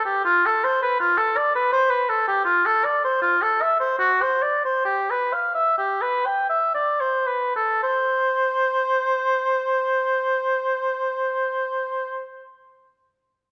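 A warm solo oboe opens this baroque-style classical fantasia, which is cut from a longer piece, in a flowing, dance-like 3/4 that moves in rubato between 54 and 83 BPM and slows from 1.4 to 7.8 seconds before a new section begins, its roomy, lightly vibrato line ranging from F4 to G5 and ringing in the moderate reverb of a scoring stage until it stops at 12.3 seconds.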